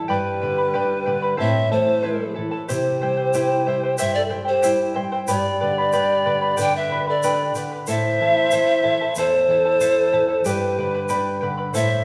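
Set in a wet recital hall with a long, soft decay, this wistful, earthy Andean folk excerpt moves in a straight 2/4 feel, led by an up-front bamboo pan flute whose breathy chiff and vibrato give it a bright edge. A mellow alto flute with a straight, tongued tone carries a second line beneath it, while a shimmering fingerpicked charango and a small thumb-plucked nylon-string guitar supply the accompaniment. A grainy egg shaker joins at 2.7 seconds.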